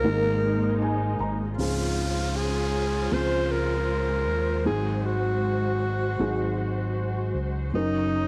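A raspy, gritty alto saxophone carries the melody up front, with a clear pop-style vibrato and a cassette-tape tint, in this tender, heartfelt pop ballad excerpt. Beneath it, a mellow felt-muted upright piano with audible action noise adds a soft fill near the start, veiled con sordino strings hold lush sustained chords, and a round, amped fingered electric bass anchors the low end. An electronic downlifter sounds from 1.6 to 7.7 seconds, and the home cassette recording carries light reverb over chords that move from Absus2 through Dbmaj7 and Ab7 to Ebm7/Gb.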